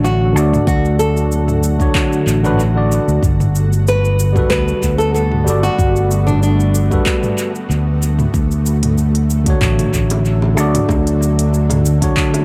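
A straight 4/4 groove at 94 BPM, built on a deep electronic kick from 0.7 s and a deep house kit of smooth hats, handclaps, shaker and toms with tape echo, carries this relaxed, sunny sunset chillout excerpt in D major, where a punchy, up-front fingered electric bass anchors Dmaj7 and Gmaj9 chords beneath a gritty, barky overdriven tine electric piano and an ethereal, shimmering pad in the background, while a fingerpicked nylon-string guitar melody with analog delay plays until 7.0 s and soft, high-tuned bongos slip in at 10.1 s, all within an echo-heavy mix bathed in spring reverb.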